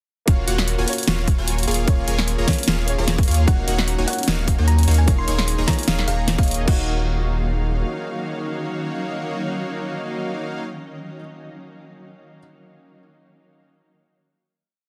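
Emotional and dreamy, this short future bass piece moves at 150 BPM with a half-time, lightly swung feel in Eb minor, its drop running from 0.3 to 6.7 seconds over lush extended chords before settling on a final Ebm9. An overdriven, hard-clipped electronic kick and a pop kit with a fat snare, hat rolls and crash sit up front beside a deep, saturated sine sub bass, while punchy detuned supersaw stabs play dotted-rhythm chords and a very quiet, intimate baby grand piano holds syncopated chords with audible action noise. A shimmering, ethereal pad with chorus and built-in reverb enters at 1.5 seconds, and from 3.5 seconds a round, tine-like FM pluck with 12-bit grit and dub echo repeats a riff melody in the background, all within a dense, heavily limited modern master.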